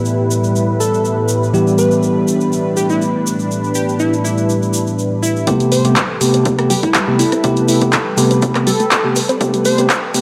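A dry, gritty hardware sound with light reverb frames this deep, moody deep house excerpt in A minor, moving at 122 BPM in 4/4 with a slight 16th-note swing. From the start, a bell-like tine electric piano sits up front with bright, clean stabs under a filter sweep, a low-pass filter and analog delay. A smooth, detuned sawtooth analog pad holds sustained chords with chorus, while a deep, dark ambient pad with a slow attack and long release lingers in the background, both breathing with sidechain pumping over an Em/A harmony. A grainy tube shaker enters almost at once, and a punchy, catchy plucky unison lead carries the melody with vibrato and analog delay from 0.8 seconds. At 5.5 seconds the harmony shifts to Am9 and a build-up begins as an overdriven deep house drum kit of handclaps, hi-hat and rim click arrives up front, joined by a layered electronic kick in the background and a very quiet, warbling, lo-fi pluck playing arpeggios.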